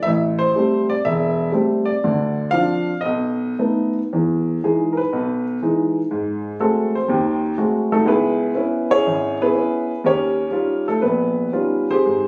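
Captured on a phone in a large studio, this short clip of solo jazz carries a moderate reverb and a natural sense of room ambience around a single upright piano. The piano sits up front and sounds intimate and woody, with its action noise audible. At 121 BPM in 4/4, the playing swings its eighth notes while also stretching time in a rubato manner, giving the mood an easy, swinging warmth. The opening moves through Am7, Dm7 and B7 before settling into E major at 4.1 seconds, where a new passage unfolds over Emaj7, G#7b9, C#m7 and D#9. Ranging from deep bass notes up into the middle-upper register, the piano carries the whole performance alone until the clip ends at 12.3 seconds, cut from a longer piece.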